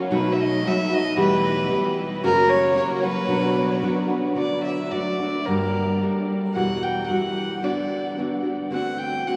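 Mexican folk in a mariachi vein, this short excerpt moves at 111 BPM in a straight 2/4, carrying a proud, romantic mood. A fingerpicked nylon-string guitar sits up front throughout, its fresh strings giving a deep classical accompaniment. A single bowed violin carries the melody from 0.1 seconds, with a soft attack and a pure, floating tone that feels distant despite its forward placement, touched by tape echo. Under the opening, a very quiet, lush violin section holds sustained chords with focused vibrato until 4.4 seconds, when the harmony settles into D major and the second section begins. The chords travel from B7 through Em and F# to Bm, then on through Gmadd9 and Emadd9 before closing on D7. A huge ambient reverb wraps the performance in a vast, echoing space, and the passage is cut from a longer piece.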